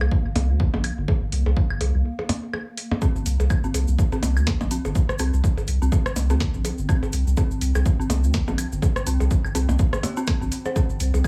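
Sparse and clinical, this minimal techno excerpt moves at 124 BPM with a swung 16th feel. A deep, saturated sub bass and a punchy, up-front electronic kick anchor the groove, joined by dry, crisp snare and metallic hats from a booming analog drum machine, electronic blips, claves and rim click with tape echo, and a tense, swarming drone pumping in the background. After a break from 2.0 to 3.0 seconds, an eerie, inharmonic FM bell riff with chorus and digital delay arrives at 3.0 seconds alongside a grainy, close cabasa, all in a small, nearly reverb-free room.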